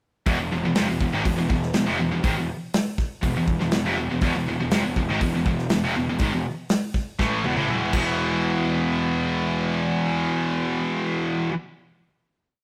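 At 0.3 seconds, a short heavy metal piece in E major begins, with three high-gain distorted guitars, a fuzzed bass and drums launching a dark, relentless power-chord riff at 121 BPM in a straight 4/4. One picked guitar sits up front, a double-tracked one stays in the background and reaches up to E4, and a third is very quiet beneath them, together building a bright wall. The overdriven bass is growly, playing driving eighth notes that double the guitar riff low in the register. The acoustic drum kit is up front and polished, with a punchy kick, medium-tuned snare, hi-hat, crash and toms laying down a big rock groove in an airy small room, then a fill from 7.2 seconds leads into the final hit. The drums stop at 8.0 seconds while the guitars and bass carry that final hit until 11.5 seconds, all captured as a rough rehearsal-room recording with light reverb and warm saturation.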